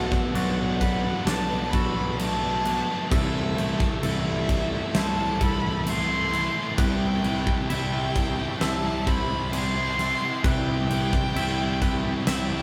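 Melancholic yet cathartic, this post-rock passage, cut from a longer piece, moves in a slow, straight 4/4 over Bm7, Am/C and Cmaj7. A rich, bowed solo violin carries the melody with vibrato and a smooth, focused top, while a lush symphonic string section holds very quiet sustained chords beneath it. Two clean, twangy electric guitars sit in the background playing arpeggios, one fingered and warm, the other picked, bright and compressed. Also in the background, a sludgy overdriven guitar and a thick fuzz guitar drive the riff, and a growly, punchy fuzz bass anchors the low end. Up front, a huge arena drum kit with a fat snare, punchy kick and bright crash cymbals fills a pumping hall sound, and the whole band plays together in one room with moderate ambience.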